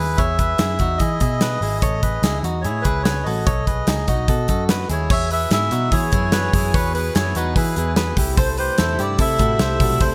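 A reedy, breathy melodica carries the tune through a touch of delay over twangy, compressed arpeggios on a clean electric guitar and a round, foam-muted picked bass, with a punchy, up-front drum kit joining at 0.2 seconds, the whole kit wrapped in gated reverb under bright cymbals. This bright, breezy jangly indie pop excerpt moves in a straight 4/4 through major-seventh and dominant chords with a bright 1980s-style digital sheen. At 5.1 seconds a soft-attacked, floating string section enters in the background with sustained sul tasto chords as the harmony shifts to Eadd9 and then C6.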